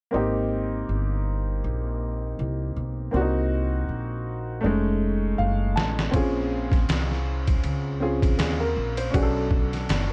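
A clear, smooth upright piano and a woody pizzicato upright bass open this relaxed jazz-hop excerpt at 80 BPM in Ab major, with the swung piano drifting through lush chords such as Abmaj9, F7alt and Bbm9. Midway through a short piano fill, a gritty, pitched-down sampler-style trip hop kit enters at 5.8 s, bringing a thumpy kick, a medium-tuned snare, hi-hat and ride. Light reverb and a dark, warm production give the track a relaxed, warm feel.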